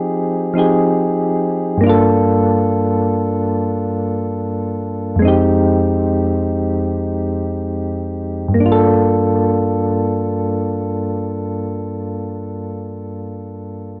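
A hip hop fragment in free time, cut from a longer piece, with a hazy, nostalgic mood. A soft, electric-piano-like synth keys part carries the whole passage as accompaniment, playing from 0.0 to 14.0 seconds across a range from F2 to A4. Its tone is round and mellow, with a fast attack that decays gently, shaped by chorus, tremolo and a low-pass filter with a sweep, and it sits up front in the mix. The harmony moves between Fm9 and Gm9, and a second section begins at 8.6 seconds on Gm9. A wet studio reverb surrounds the keys, and the dulled top end adds to the faded, hazy feel.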